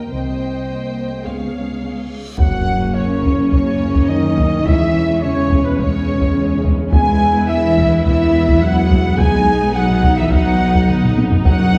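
Dramatic and relentless, this epic orchestral film score cue at 106 BPM opens with lush, vibrato-rich violins carrying the melody over a second violin line, smooth violas, dark cellos, double basses and sustained French horn chords, until a huge, bright reverse cymbal at 2.1 seconds and an impact at 2.4 seconds launch heavy taiko drums, clear trumpet stabs, a very quiet airy flute and a mellow tuba, all set back in a reverberant recital hall, with a drum fill at 10.9 seconds.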